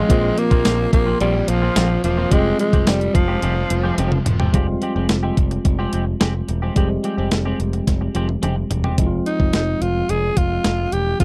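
This 1980s-style pop excerpt opens at once with a breathy, raspy alto saxophone carrying the melody up front, scooping into notes with vibrato over a dramatic, nostalgic bed in F minor at 108 BPM. Beneath it, a tine electric piano heard through its built-in speakers, a twangy, compressed clean guitar riff coloured by analog chorus and tape echo, and a double-tracked, overdriven stack guitar in the background fill out the harmony, moving from Bbsus2 to Fmadd9. A thumpy, sampler-style 12-bit drum machine with a medium-tuned snare, hi-hat, tambourine and toms sits forward with overdrive, alongside a bright, picked electric bass. The stack guitar and saxophone drop out by 4.5 seconds after a drum fill, leaving the piano, riff guitar, bass and drums, and another fill leads into a settle on Fm at 9.0 seconds. The saxophone returns at 9.3 seconds over the closing stretch, all captured in a dry, close 1970s-style studio sound with little reverb.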